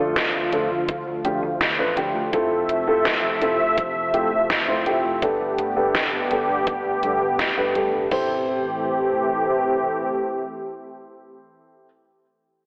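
Cinematic and driving, this synthwave excerpt moves at 83 BPM in A minor, cycling through Dm, Fmaj7, Gadd9 and Am7 in a lush hall reverb with a thin, telephone-like tone. Up front, a smooth, detuned sawtooth pad holds sustained chords with chorus and sidechain pumping, while a dark, boxy grand piano plays stabs through a low-pass filter sweep and digital delay, and a round, punchy hollow-body electric bass sits low in the background. A knocking electronic kick and a pop kit with deep snare, hi-hat and crash, both overdriven and the kit gated, enter at 0.2 s and drop out at 8.3 s, leaving the pad, piano and bass for the closing bars.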